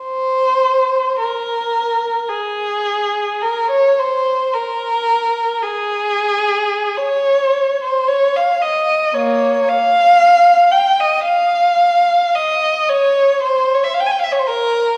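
Classical and yearning, this mournful excerpt for unaccompanied violin unfolds in F minor at a free, rubato pace of roughly 42-59 BPM, the lone bowed violin sounding warm and up front with vibrato, soft attacks and expressive portamento across its range from Bb3 to Ab5, while a wet recital hall reverb lends a distant glow, as of a church or concert hall, throughout its 15 seconds.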